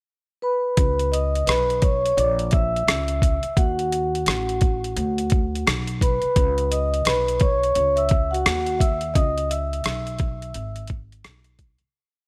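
A laid-back boom bap beat at 86 BPM, with swung sixteenth-note hi-hats, a thumpy kick and rim clicks from a gritty, pitched-down sampler kit up front, drives this cool, nocturnal jazz-hop piece in C# minor, where a mellow, ringing vibraphone played with soft mallets and slow motor vibrato enters at 0.4 s pushing drop2 chords through sus2, diminished and minor-ninth harmony before taking a solo, while a woody, growly pizzicato upright bass walks with muted ghost notes beneath, in light studio reverb, until a fade-out from 9.2 s.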